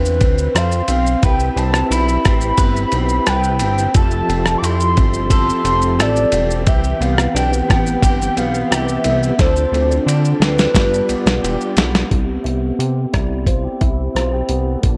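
A gritty, compressed sampler-style drum kit with a thumpy kick sits up front in this hazy, dreamy indie and bedroom-pop excerpt. It plays alongside a glossy, nasal chorused synth bass and a warbling, detuned lead melody with subtle chorus and slapback echo that sings until 11.7 s. Underneath, a slightly broken-up electric guitar through a small old amp with lush chorus and vibrato and, from 1.2 s, a soft, flute-like tonewheel organ with slow rotary speaker and cassette-tape colour drift through Dm7, Cmaj7, Fmaj9 and G7. A drum fill leads into the closing section at 12.1 s, where a filter sweep and a woody kalimba's short second line join the mix under light reverb.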